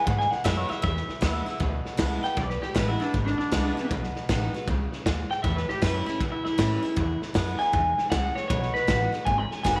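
A twangy, slightly broken-up electric guitar through a small old amp carries a clean solo from the start, up front and trailed by tape echo, in this rollicking, retro rockabilly excerpt with a swung feel. Beneath it, a picked steel-string acoustic guitar with fresh strings plays the accompaniment over an E7, B7 and A7 progression, while a woody, thumpy pizzicato upright bass on gut strings holds the low end. A raw garage drum kit, gritty and punchy with a rolled-off top, keeps hi-hat, kick and snare going and drops in a fill at 9.6 seconds, all with little reverb.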